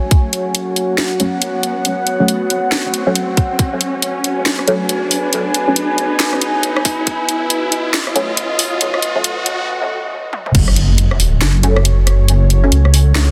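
A dense, heavily limited mix opens on a deep, warbling pad with chorus and reverb, setting a cavernous, brooding deep dubstep excerpt at 138 BPM with a half-time, swung feel in F# dorian. Over a build-up of 10.5 seconds, a muted, filter-swept dub chord stab with phaser and dub echo drifts above a cracking, overdriven garage kit of snare, claps, hi-hat, rim click, toms and crash, while a tight electronic kick lands sparsely and a riser climbs before a short break. At the drop, the impact hits and a rumbling, detuned saw bass enters up front on F# minor, its beating low end filling the closing seconds.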